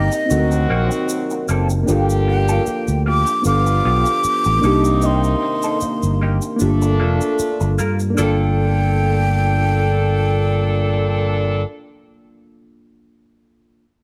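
A slow 76 BPM 4/4 groove with a lightly swung sixteenth feel carries this silky, cinematic slice of lush 1970s-style soul in G minor: a punchy, up-front fingered electric bass anchors a reedy, clean electric piano with phaser, a slightly broken-up, lo-fi electric guitar riff with wah sits in the background, a very quiet mellow French horn section holds smooth chords, present pop-style horn stabs enter at 0.3 seconds, and a grainy, bright tube shaker drops out at 8.5 seconds, all while a breathy, expressive jazz flute with vibrato sings the melody over chords moving from D7b9b13 to Gm9 in light studio reverb.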